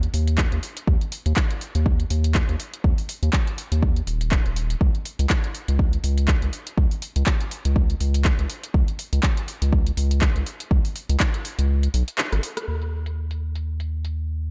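An overdriven, deep electronic kick sits up front in this dark, moody late-night deep house excerpt, driving a swung groove alongside a round, nasal analog bass with sidechain pumping and a layered, large-room kit of handclaps, rim clicks and metallic, low-pass-filtered hi-hats, until the kick drops out at 11.7 seconds, a drum fill arrives with a band accent near its end, and a filter sweep on the drums runs from 12.7 seconds to the close.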